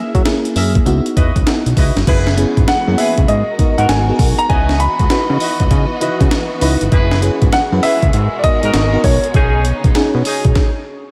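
Slick and confident, this new jack swing excerpt in C# dorian moves at 99 BPM with a swung sixteenth feel, driven by a gritty, compressed breakbeat kit with a thumpy kick and high-tuned snare, a fat, saturated analog bass, and a lush, warbling FM electric piano with a soft pad layer and chorus, while tight, jazz-style horn stabs with tape echo add punch, distant bowed strings with portamento enter at 2.1 s, a dark, mellow baby grand carries the melody from 2.7 s, and a big arena-like hall reverb surrounds the mix before a brief stop at 10.6 s.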